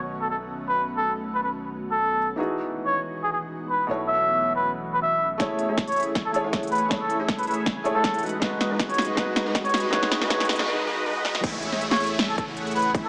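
A half-time 4/4 pulse at 159 BPM drives this euphoric, bright future bass excerpt in A lydian, which opens with a felt-muted upright piano with audible action noise, an ethereal, airy pad in the background, a deep saturated sub bass, and an up-front cup-muted trumpet playing a veiled, breathy jazz-style solo with light vibrato. At 5.4 seconds a punchy, overdriven electronic kick and a big-room dance kit with crisp hats and snare arrive alongside a fat, detuned sawtooth polysynth riff, while filter sweeps and a very quiet riser, noise sweep and downlifter shape the build-up toward a short break. The drop lands at 11.4 seconds on Amaj7. Throughout, sidechain pumping moves the piano, pad, bass, trumpet and polysynth, all set in a lush hall reverb with a small-speaker sound.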